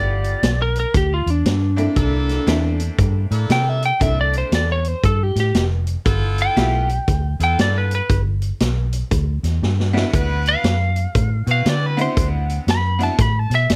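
A slightly broken-up lead guitar opens this rollicking, soulful electric blues shuffle, its dark, compressed tone playing a solo up front from the first moment. Beneath it, a round, foam-muted fingered electric bass sits equally forward, while a jangly, metallic tack piano adds bright, short-sustained accompaniment. A vintage drum kit joins almost at once with a punchy kick, a medium-tuned snare and hi-hat, its top end rolled off in a studio-room sound, and it plays a brief fill around 9.6 s. An edgy, tight saxophone section enters with jazz-style stabs at 2.0 s, lightly touched with vibrato and sitting lower in the mix. The piano falls away at 6.9 s and returns at 9.9 s as the harmony moves through thirteenth chords, all under a light reverb in this excerpt cut from a longer piece.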